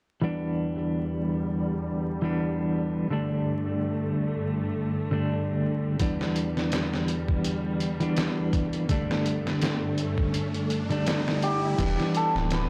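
Trip hop with a hypnotic, smoky mood, opening on a clean electric guitar with tremolo and tape echo over dark, bowed strings carrying 12-bit sampler grit and a filter sweep, before a compressed, pitched-down sampler-style drum kit arrives at 6.0 seconds, an electronic riser enters in the background at 8.7 seconds, and a shimmering hammered cimbalom melody and round sine sub bass join in the final moments amid vinyl crackle.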